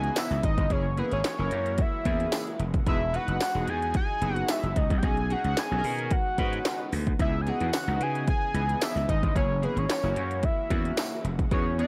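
An overdriven, glitchy electronic drum kit sits up front with a deep kick, tiny snare, clicky hats and handclaps under gated reverb, driving this slick, danceable excerpt of early-eighties boogie funk at 111 BPM in a straight 4/4. A growly, overdriven slap bass punches alongside it, while a fat, mellow analog lead carries the melody with vibrato and filter sweeps over a glossy, chorused, detuned polysynth. A very quiet, lush unison pad holds sustained chords through a C#m9, F#9, Emaj9 and B6 progression, and a jingly, close and dry tambourine joins at 0.2 seconds, all in a dry, reverb-light mix.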